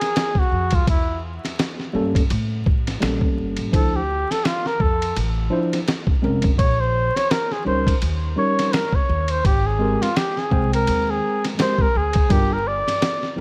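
Jazz-hop at a swung 84 BPM, smooth and relaxed, where a soft-attacked flugelhorn solos up front with vibrato, scooped notes and tape echo over a gritty, compressed sampler-style kit of thumpy kick, snare, hi-hat and ride, joined by a woody pizzicato upright bass at 0.5 seconds and a worn, slightly out-of-tune, lightly overdriven tine electric piano at 1.9 seconds, with light reverb and vinyl crackle around them as the chords move from A7b9 to Dm9 and on through Eb7 to Abmaj9.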